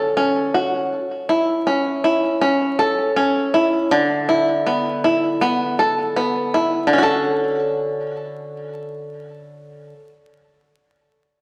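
A straight, unhurried 4/4 pulse at 80 BPM carries this short fragment of folktronica in D major, cut from a longer piece, with a warm, hopeful mood. A solo bluegrass banjo, played with fingerpicks, fills the whole 10.1 seconds, sitting up front with a twangy, percussive bite across its span from D3 to A4. The harmony moves from Dmaj7 through A/C# to a suspended E7sus4 before settling back on Dmaj7 as a new section begins at 6.9 seconds. A recital hall reverb with a long 1.7-second decay gives the acoustic instrument a generous, lingering halo, while a layer of vinyl crackle adds a dusty grain.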